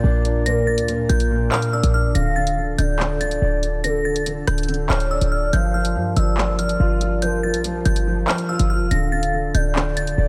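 Cold and ominous, this drill-style hip hop excerpt moves with a half-time feel, cut from a longer piece. A glassy, crystalline synth bell carries the melody high above, its bright FM tone treated with chorus, tremolo and analog delay, while a smooth, gliding portamento lead with vibrato traces a second line beneath it through chorus and delay. A dark baby grand piano with long sustain supplies the accompaniment, colored by ensemble chorus, and a mellow, distant French horn section holds sustained chords in the background. The short 808-style bass sits up front, punchy and tight with a sine body, a noise layer and a fast, decaying attack, and an electronic drill kit of handclaps, rim clicks and bright hi-hats enters at 0.2 seconds. The harmony moves from Bb through Dm and Gm7 back to Dm, all set in light reverb.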